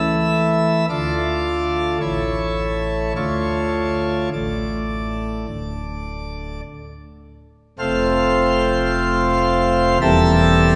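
A pipe organ on full plenum, mixtures drawn, carries this grave, solemn classical chorale alone, its brilliant baroque voicing set up front with a touch of chiff at the start of each pipe's speech. The piece moves in a slow 4/4 at 53 BPM with a rubato feel, in D minor, spanning from deep notes at D1 up to A5. A high A5 sounds first, and the harmony then moves from D minor to A before settling back on D minor. Around 7.8 seconds a new section turns toward F major, then leans on a C7 chord over E near 10.0 seconds, leaving the phrase unresolved as this fragment of a longer work breaks off at 10.8 seconds. A wet church reverb with a long 2.8-second decay surrounds the organ, giving the chords a resonant hang.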